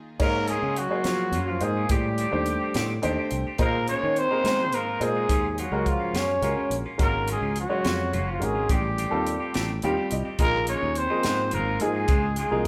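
Electric jazz fusion in a slick, funky 6/8 at 71 BPM, counted in dotted quarters with a straight feel, this clip opens on a drum fill and a band accent. A growling trumpet carries the melody up front, raspy and gritty with vibrato and scooped notes, set in a distant, roomy space. Below it, a breathy trombone plays a second line in the background with a soft attack and a whispered, intimate tone. A baby grand piano accompanies with a warm, present sound and adds fills at 2.8 and 9.5 seconds, while a bright, clean electric guitar contributes picked stabs. Underneath, a sustaining fretless bass sounds growly and direct, and a tight, polished funk kit with a high-tuned snare, kick, hi-hat and crash sits dry and up front. The harmony moves through extended chords such as Ab13sus4, Cm69, Ebm9 and F9/A before reaching Dbmaj9, with the band playing live in one large studio under moderate reverb.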